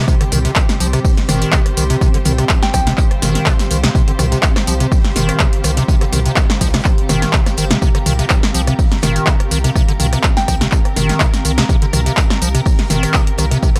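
Trippy, gritty acid house in C minor at 124 BPM with a light swing, this excerpt is driven by a punchy, up-front electronic kick and a dry analog drum machine of claps, metallic hats, rim clicks, snare, tambourine and toms, while a squelchy, resonant square-wave acid riff with overdrive, chorus and delay pumps over a deep, round analog bass, and a bowed string section, a blurred, evolving granular pad and a very quiet, dark acoustic kit of hi-hat and snare sit in the background, with a soft FM bell chiming briefly at 2.6 and 10.4 seconds, all in a small, dry, gritty room.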